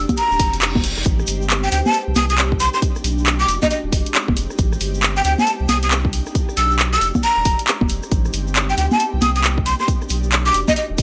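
An ethereal pad of detuned sawtooth chords, washed in chorus, phaser and sidechain pumping, opens this bouncy, soulful two-step garage excerpt over a thick, saturated sub bass, with a reverse cymbal sweeping in at 0.4 seconds. A punchy electronic kick and an up-front house kit of congas, handclaps, rim clicks and warm hi-hats ride a swung groove, while a grainy tube shaker sits in the background. A breathy, mellow jazz flute with unsteady vibrato, a chiffy attack and tape echo carries the melody over a looping cycle of minor seventh chords.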